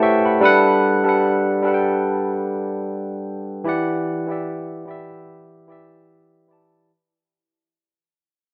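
A barky tine electric piano carries this short R&B excerpt alone, lightly overdriven through a combo amp and placed up front in the mix. The mood is introspective and late-night, set at 74 BPM in 4/4 with a gentle swing on the sixteenths. The piano opens with a brief fill in the first 0.4 seconds, then settles onto a Gmaj7 chord before moving to Em7 at 3.7 seconds, ranging from E3 up to C#6. From 0.4 seconds the recording fades out through to its end at 6.9 seconds. A moderate, lush hall reverb surrounds the playing, and the overall sound has the rough character of a home demo mix.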